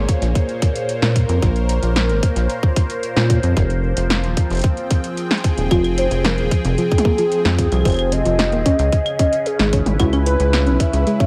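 An eerie, intricate IDM excerpt in straight 4/4, where a swirling, phased analog pad holds sustained chords over a rubbery, hollow square bass, a tight, tape-warm electronic kick and an analog drum machine with punchy snare, metallic hats, claves and toms, until at 5.7 seconds a warbling, nostalgic lead with vibrato and a soft, round pluck playing dark arpeggios in the background join, all set in light digital ambience.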